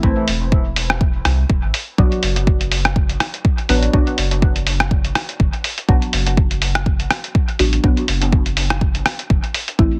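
Hypnotic and hazy, this dub techno excerpt moves at 123 BPM in 4/4 with a light 16th-note swing, moving from Am to Bm over a deep, up-front electronic kick and a soft, round sub bass that pumps against it. Deep, mellow chord stabs with a dark, warbling, detuned, vintage character drift through chorus, phaser, pumping and dub echo, while a muffled, pitched-down sampler-style kit adds hi-hat and rim click from 0.3 seconds, also trailing dub echo. Light reverb and a heavily compressed, radio-like sound give the whole a hazy sheen.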